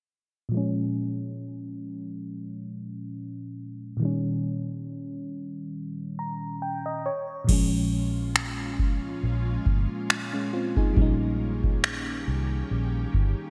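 A mellow, full-bodied FM electric piano with a chorus sheen carries this sensual, longing contemporary R&B excerpt at 69 BPM, moving between Bbm7 and Eb7/Bb under a filter sweep before a brief fill leads into a fuller passage at 7.5 seconds. There a booming analog drum machine with deep kick, finger snaps, crash cymbal and gated reverb enters alongside a dark, foam-muted fingered electric bass, while an ethereal, detuned pad with ensemble chorus and sidechain pumping joins at 8.2 seconds. The bright 1980s-style digital production sits in a lush hall reverb.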